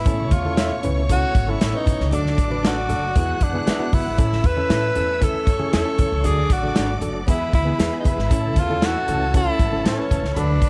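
Vinyl crackle and a small-room ambience frame this short, uplifting slice of 1960s-style soul, cut from a longer piece and made for dancing in a straight 4/4. A tenor saxophone carries the melody up front with a soft attack, jazz-style vibrato and a touch of analog delay, while a studio violin section plays a smooth, bowed second line above it. Underneath, a barky, reedy electric piano accompanies with light overdrive and fast tremolo, a very quiet tonewheel organ holds shouting chords through a fast rotary speaker, and an electric guitar through a small old amp adds twangy, slightly broken-up stabs with subtle chorus in the background from 0.6 s. The rhythm section pairs a woody, thumpy pizzicato upright bass on gut strings with a polished, airy acoustic drum kit of punchy kick, medium-tuned snare and hi-hat, plus low-tuned congas struck with hard hands. The harmony cycles through A, D and E chords.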